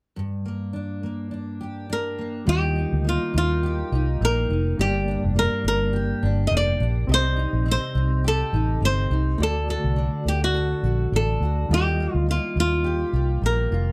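This reflective, tender acoustic pop excerpt sits in a moderate small room that lends a short, natural ambience, with a gentle swing to its 16th-note feel. A double-tracked, fingerpicked steel-string acoustic guitar opens alone at 0.2 seconds, its jumbo body sounding full and warm. At 1.9 seconds a bright flamenco guitar takes up the melody up front, its fingerpicked lines sitting clearly over the accompaniment. From 2.5 seconds a vintage muted fingered electric bass arrives, dark, round and punchy, foam-muted and amped, and a barky, reedy electric piano with tremolo settles in the background through its built-in speakers. The harmony moves through minor chords, an add9 colour and a major chord before returning to the Ebadd9, giving the passage a quietly searching, heartfelt character.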